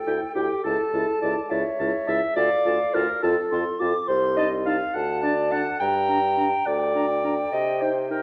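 The recording has the worn, warbling character of old cassette tape, its pitch drifting, and sits in a wet recital hall with a roomy reverberant tail. This short cut from a longer classical-period movement for wind quintet moves in 6/8 with an urgent, dramatic mood, and the harmony turns to minor from about 4.1 seconds. A hollow, airy concert flute carries the melody high in its range, close-miked with a crisp attack and vibrato. Up front, a mellow clarinet gives the most prominent accompaniment, joined by a distant French horn in its middle register, while an oboe adds a soft-attacked, vintage-sounding second line. A bassoon, also up front and shaded with light vibrato, anchors the bass in a low register.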